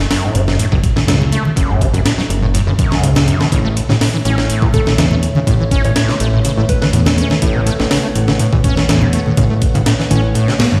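A straight 4/4 breakbeat groove at 123 BPM drives this funky, raw fragment, with a compressed, pitched-up sampler kit built on a thumpy kick and high-tuned snare, a fat, tube-saturated analog bass and a squelchy, distorted acid riff up front, congas and bongos tucked in the background, a moody, pumping analog pad entering at 3.8 seconds just after the F#m harmony shifts to Aadd9, and a round, warbling FM lead with an old-record tinge surfacing briefly from 4.7 to 6.9 seconds, all set in a large, reverberant room.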